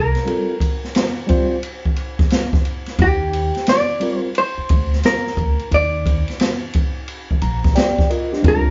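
A clean, compressed hollow-body jazz guitar carries the picked melody up front in this warm, smooth jazz-hop excerpt, swung at 88 BPM in Eb major. Beneath it sit a woody, growly pizzicato upright bass, an open acoustic drum kit with boomy kick, medium-tuned snare, hi-hat and dark ride cymbal, and a mellow tine electric piano heard through its built-in speakers. A break runs from 0.3 seconds, the harmony moves from Bbsus2 to Ebmaj9 at 3.0 seconds, and the electric piano adds a fill at 7.1 seconds, all in a live single-room sound with moderate reverb and a softened top end.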